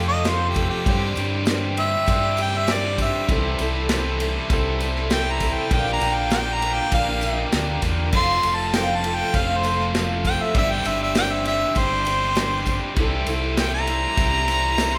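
A straight 4/4 groove at 99 BPM drives this hopeful, jangly folk and heartland rock passage in C mixolydian, where an up-front harmonica with light vibrato and scooped notes carries the solo melody over a shimmering, octave-doubled twelve-string acoustic guitar, a biting double-tracked overdriven guitar riff, round fingered electric bass, a punchy country drum kit with dark cymbals, a jingly tambourine kept very low, and a smooth tonewheel organ with chorus vibrato and key click sitting in the background, the ensemble heard in a moderate recital-hall reverb.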